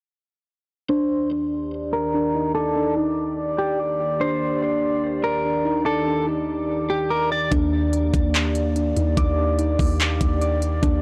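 A blown-out, overdriven recording with light digital ambience carries this dreamy, floating half-time cloud-rap fragment, where muted, felt-like synth keys play arpeggios and a dark, clean electric guitar picks a melody from 0.9 s beneath a filter sweep, a warbling, nostalgic tape-like pad holds chords from 1.2 s, and at 7.5 s a deep, round 808-style bass and a trap kit with a knocking kick, crisp hats, handclaps and sampler grit arrive up front.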